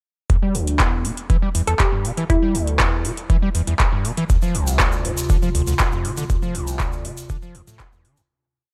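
A dry, gritty recording of a short acid house piece at 120 BPM in E phrygian, with a trippy mood and a straight 4/4 groove that runs from 0.3 s to the end. An overdriven electronic kick drives a deep four-on-the-floor pulse, while a booming analog drum machine, up front and overdriven, adds metallic closed and half-open hats and a clap backbeat, both re-recorded in a small room. The squelchy, resonant acid bass carries a 16-step riff with accents, slides and filter sweeps, its distortion, tube saturation, analog chorus and delay giving it a snarling edge over Em7 and then Dm7. A hollow, bouncy square pluck, detuned and ring-modulated with lush chorus and delay, drops in short answering phrases between 1.7 and 2.7 s. From 4.3 s a grainy, distant egg shaker plays hand-played sixteenths, and a warbly, nostalgic lo-fi pad with slow attack, chorus, reverb and sidechain pumping arrives at 4.7 s as the piece fades out from 5.6 s.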